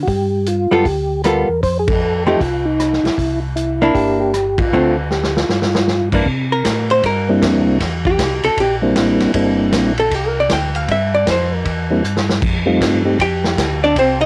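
Bluesy and soulful, this swinging soul jazz organ trio cut has a flute-like, percussive tonewheel organ carrying the melody through a slow rotary speaker, a round, dark tonewheel organ bass underneath, a punchy, up-front vintage drum kit with dark cymbals and fills, and a clean, compressed archtop guitar that comps before taking a hollow-body solo from 6.3 seconds, all captured with light reverb on a home cassette recording.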